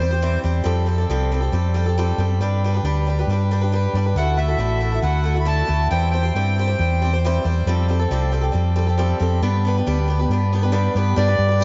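A picked swing-style acoustic guitar, bright and boxy with fresh strings, opens up front alongside a round, punchy fingered electric bass, while a reedy accordion with tape echo touches in for a moment before returning at 4.2 seconds to carry the melody until 7.2 seconds. This jangly, nostalgic slice of folk rock and heartland rock moves in a straight 4/4 through chords such as C/E, Fadd9, G and Dadd9. A church reverb soaks the dreamy, dark-edged mix, and the accordion's slow-beating, smooth tone surfaces once more at 11.2 seconds.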